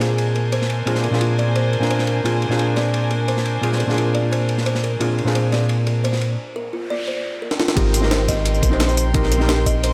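This liquid drum and bass excerpt moves at 174 BPM in a straight 4/4, with an uplifting, lush mood. A dark, clean hollow-body jazz guitar sits up front with fingered accompaniment and digital delay, while a distant chamber string section holds reedy, gut-toned sustained chords with light vibrato and sidechain pumping. A woody, mellow kalimba plays soft, short arpeggios through tape echo, and a crunchy breakbeat kit with dark cymbals, a medium-tuned snare and a saturated, rolled-off top ticks along on ride and snare, recorded in a small room. A very quiet noise sweep and downlifter enters at 6.6 seconds during a break, and a gritty, pitched-up jungle sampler-style kit adds hi-hat, snare and tambourine with a fill at 7.5 seconds. At the drop at 7.8 seconds the harmony shifts from Bb9 to Abmaj9 as a smooth gliding synth bass with portamento and vibrato arrives alongside an overdriven, knocking electronic kick.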